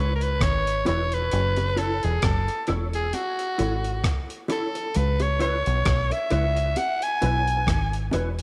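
A swung 4/4 roots reggae groove sets a hypnotic, laid-back mood as a gritty, compressed sampler-style drum kit with thumpy kick, hi-hat and rim click carries tape echo beneath a dark, round dub bass that sits up front with transformer saturation, while a mellow, clean electric guitar colored by ensemble chorus and tape echo moves from C#m7 to F#m7 and back, soft-handed, high-tuned bongos join in the background at 0.9 seconds, and a raspy, bright soprano saxophone solos forcefully over the top with vibrato and tape echo in this cut from a longer piece.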